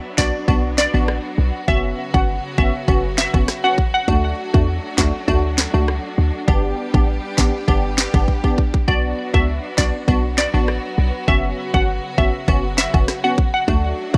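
Bouncy and hypnotic, this 100 BPM dancehall excerpt sets an overdriven, up-front island pop drum kit of tight kick, sharp snare, rim click and handclaps over a punchy short 808-style bass, with crisp detuned wavetable chord stabs, a glassy, crystalline wavetable pluck melody warbling through chorus and digital delay from 0.2 to 4.0 seconds and again from 8.9 seconds, and a rich, smooth string section holding sustained chords that pump under sidechain, all in a light reverb, with a drum fill at 8.3 seconds.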